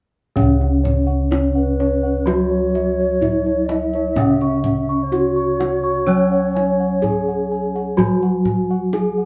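A live-room recording with moderate studio reverb gives this serene, ceremonial Javanese gamelan fragment a gentle bloom, lifted from a longer piece. A soft, airy bronze metallophone carries the melody with shimmering beats from its paired tuning, over a bright, dry, close-miked metallophone accompaniment, up-front bossed gongs tracing arpeggios, dark, smooth bossed gongs in the bass and a tight, saturated kendang. A pure, hollow xiao with vibrato joins as a second line at 1.6 seconds and drops out at 8.2 seconds.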